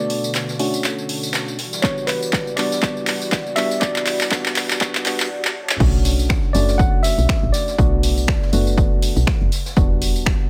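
An overdriven electronic kick, layered and re-recorded in a large room, thumps up front from 1.8 seconds, anchoring this deep, late-night deep house excerpt at 121 BPM in B minor with a 16th-note swing. A tape-warm analog drum machine sits forward with crash cymbal, finger snaps, handclaps, hi-hat and tambourine, while a very quiet acoustic jazz kit adds hi-hat and a medium-tuned snare. A worn, slightly out-of-tune tine electric piano carries a mellow melody through tape echo, and hollow, wave-folded organ stabs with chorus and tape echo repeat throughout, while a smooth, warbling vintage pad with lush chorus and sidechain pumping hangs in the background. The opening is a build-up of drum fills and a filter sweep on the stab over Bm7 and Em7, and at 5.8 seconds the pad drops out as the drop arrives with a round, woody FM bass pumping beneath the groove. A light reverb and high-pass filter shape the whole mix.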